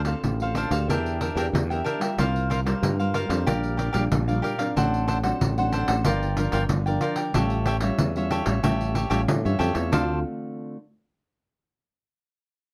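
Samba and choro in D minor at 93 BPM, this lively, yearning excerpt sets a crisp, bright cavaquinho and a growly fretless electric bass up front, joined by a jingly pandeiro struck with hard hands in a small room, while a full-bodied, thumb-plucked classical nylon-string guitar sits in the background. The harmony moves from Dm7 through chords such as Em7b5, C7sus4 and A7b13 before returning to Dm7, all under light reverb. At 9.9 s, as a new section begins, a mellow, close-miked jazz-style trombone enters in the background with a brief vibrato note just before the other parts stop.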